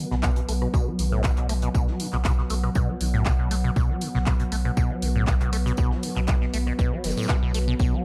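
Trippy and raw, this acid house excerpt moves at 119 BPM in a straight 4/4, built on an up-front, punchy electronic kick drum and a tape-warm analog drum machine of handclaps, hi-hat and rim click, while a crisp fusion drum kit of hi-hat, high-tuned snare and tambourine sits in the background with echoing delay. A squelchy, resonant sawtooth acid bass riff carries a filter sweep throughout, with phaser and analog delay, over a deep, round sine sub bass, both breathing with sidechain pumping. Above them, a moody, detuned analog pad holds sustained chords over a B5 opening, roughened by 12-bit sampler grit and chorus, and a very quiet, warbling, nostalgic lo-fi pad adds texture, all set in a small, echo-heavy room.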